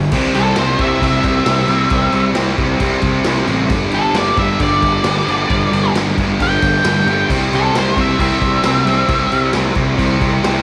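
A double-tracked, up-front fuzz guitar riff and a growly, overdriven picked bass open this swaggering, raw garage rock excerpt at 134 BPM, joined at once by a gritty, punchy drum kit in a stone room and, from 0.4 seconds, a dark octave-fuzz lead guitar melody trailed by tape echo, all moving between C and G5 chords in a moderate echo chamber.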